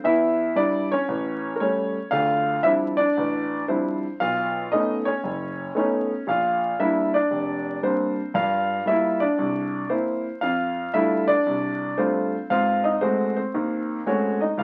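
Through the crackle of a very old 78 rpm record, an intimate, up-front concert grand piano with deep bass and audible action noise plays a playful solo jazz passage at 116 BPM in a swung 4/4, moving from Em7 through Dm11 and Bb6 to F69 before ending on Ab7b9 at 12.5 seconds, all in a wet studio reverb, in this fragment lifted from a longer piece.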